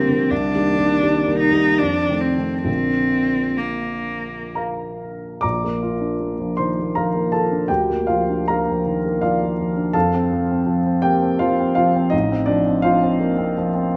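A romantic classical duo for cello and baby grand piano, this tender, serene passage cut from a longer piece moves in a rubato 3/4 between 59 and 86 BPM in B-flat major. A single bowed cello carries the melody at the outset, its rich, expressive tone shaped by vibrato, soft attacks and portamento in a narrow middle register, and it falls silent at 4.6 seconds. The piano accompanies throughout all 14.0 seconds, its smooth, vintage voice sounding with long sustain across a broad range from deep bass to high treble. Harmony settles from Cm7 and F7 toward B-flat, then moves through Bb/D, F and F/A in the second section, which begins at 5.4 seconds. Both instruments sit up front within the wet reverberation of a recital hall.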